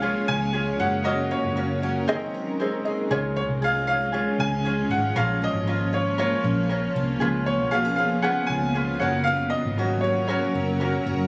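Captured on a phone in a room with club reverb and compression, this sunny, heartfelt acoustic pop fragment in Db major moves at 117 BPM, with a brilliant, woody upright piano carrying the melody up front over a light fingerpicked ukulele, a full-bodied jumbo steel-string guitar picking arpeggios with audible finger squeak through plate reverb and digital delay, a cloudy, detuned granular pad holding slow-attack chords, and a round, foam-muted electric bass anchoring the low end.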